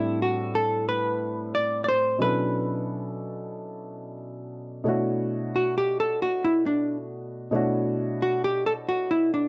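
Swung sixteenths at 90 BPM in 4/4 give this smoky, nocturnal hip hop fragment in B minor a laid-back sway, as a clean, picked hollow-body jazz guitar carries the melody up front over a mellow, vintage-toned dark grand piano moving from Am11 to Bm11 at 2.2 seconds, both touched with plate reverb in a moderate studio room, before the guitar takes a solo from 4.9 seconds until the cut at 9.5 seconds.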